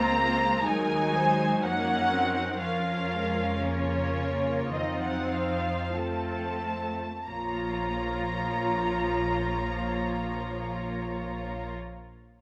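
A solemn, melancholic string orchestra passage opens with all five muted sections sounding together: the violins carry a veiled, up-front melody over a second violin line with a soft attack, while violas add lightly vibrato accompaniment above a lush cello bass and a close, dark double bass. The rubato phrasing slows through the first 7.3 seconds as the harmony moves toward a dominant chord, then settles onto a minor chord for a new section, with every part ending together at 11.7 seconds. A moderate recital hall reverb lends the con sordino strings a distant, melancholy glow in this fragment of a longer slow movement.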